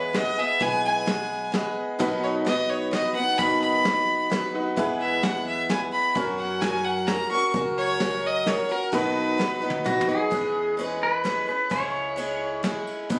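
This short cut from a longer honky-tonk and classic country tune moves in a down-home, sunny three-beat feel, opening with a clear, earthy fiddle carrying the melody up front with light vibrato. Beside it, a bright, boxy swing-style acoustic guitar is picked on fresh strings. A metallic, jangly tack piano sits in the background and drops a honky-tonk fill at 1.3 seconds. Underneath, a woody, thumpy upright bass on gut strings holds the low end, and a soft brush drum kit with dark cymbals, a punchy kick and a medium-tuned snare keeps smooth time, adding a fill at 9.4 seconds. At 10.3 seconds a twangy, clean pedal steel guitar takes a solo up front, played with fingerpicks and slide, compressed and shaped by volume swells. The sound carries moderate studio reverb and the roomy character of a phone recording made in the room.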